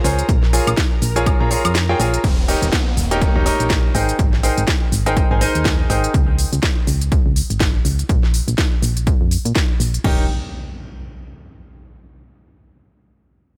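A feel-good, euphoric slice of piano house opens on a drop, with a bright concert grand piano riff, a round FM bass and a garage drum kit arriving together over a faint, shimmering string machine that holds sustained violin chords only until 2.3 seconds. The punchy, dry electronic kick joins at 0.3 seconds and is the loudest part, briefly dropping out just before the harmony moves from Bbm7 to Eb7 and on through Abmaj9. The piano sits up front with a brilliant, polished tone, short sustain and tape echo, while both it and the mellow, fast-attack bass pump against the kick in a swung groove. The layered, tape-colored kit adds a cracking snare, crisp hats, shaker, woodblock and crash, with a sense of a large room behind it. An electronic downlifter and impact sweep in quietly, the piano falls away at 6.1 seconds and returns for a brief stab on the closing Eb7, and the whole mix stays close and nearly free of reverb.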